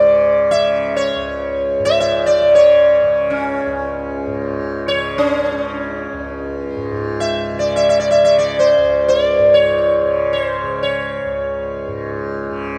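Longing and introspective, this short excerpt from a longer Hindustani classical performance unfolds in free time, centered on C# in raga Todi. A sitar carries the melody up front, its plectrum-plucked tone buzzing and shimmering with sympathetic strings as it moves between C#4 and E5. Beneath it, a softly plucked tanpura holds a drone from C#2 to C#3, its own buzzing shimmer sitting well back in the mix. Both instruments sound from the opening moment, with the sitar falling away at 12.6 seconds and the tanpura lingering until 12.8 seconds. The performance is captured in a church or concert hall, where a long cathedral reverb surrounds the strings in a deep, resonant wash.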